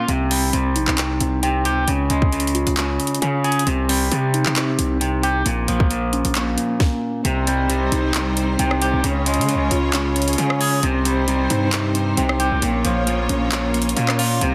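This dark, hard-hitting trap cut from a longer hip hop piece opens with an up-front, twangy electric guitar at the edge of break-up and a mellow tine electric piano playing arpeggios through digital delay, joined almost at once by a saturated, aggressive 808-style bass and a trap kit with a hard-clipped kick, sharp snare, metallic hats, handclaps and rim clicks. At 134 BPM in a half-time feel and C phrygian, the loop circles Cm, Db and Bbm. At 7.2 seconds a lush, bowed symphonic string section adds smooth sustained chords under a dense, heavily limited master with light reverb.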